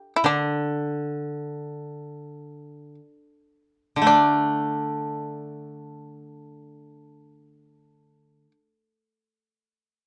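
A plectrum-plucked shamisen opens this calm, austere fragment of Japanese chamber music with a bright, buzzing, percussive melody in free time that slows through the first 4.1 seconds, joined at 0.2 seconds by a woody, dry koto accompaniment played with fingerpicks and set up front, all within a moderate studio reverb and a dark production.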